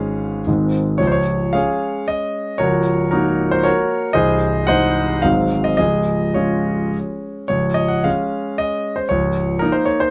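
A close, intimate concert grand piano opens this short cut from a longer piece, playing a graceful, rustic romantic dance in 3/4 with dotted rhythms, moving with rubato between 99 and 123 BPM in Db major. The solo piano reaches from deep bass up to Gb5, its long sustain carrying the harmony through Db, Ebm7/Db and Ab7 before returning home. The piano sits up front in a light reverb, detailed enough to reveal audible action noise beneath its polished tone.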